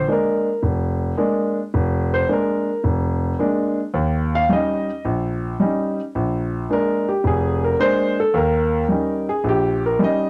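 Playful and relaxed, this short cut from a longer solo jazz piece has a grand piano alone from 0.0 to 10.3 seconds, swinging its eighth notes at an easy, unhurried pace in 4/4. The piano sits up front with a smooth, vintage tone, ranging from deep bass notes up into its middle-high register. The harmony moves between Bb7 and Eb7, giving the passage a loose, bluesy lilt. A moderate booth ambience wraps the instrument in a short, close room sound. The home cassette recording adds a homespun, intimate character to the performance.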